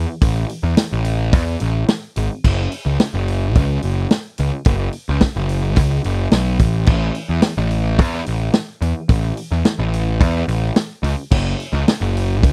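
A fuzzy, overdriven picked electric bass sits up front from the start, joined at 0.2 seconds by a warm vintage drum kit with a rolled-off top, featuring crash, hi-hat, a punchy kick and a medium-tuned snare, in a wistful, carefree indie rock excerpt in A major at 108 BPM, captured dry and close like a 1970s studio recording.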